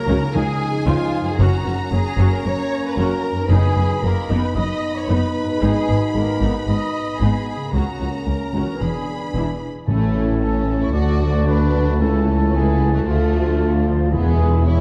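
A lush, focused violin section carries the melody in this triumphant, adventurous film-score excerpt, with a second violin line, woody violas, expressive cellos and a smooth double bass section beneath, while French horns hold sustained chords, a dark, tight trumpet section adds stabs, and a ringing concert harp plays arpeggios throughout. Close, articulate timpani struck with hard mallets sound at the opening until 4.3 seconds and return briefly at 9.9 seconds, when the music shifts to A major and a mellow flute ensemble, a distant clarinet and a roomy oboe join on second lines. The production is dark and warm, set in a moderate scoring-stage reverb.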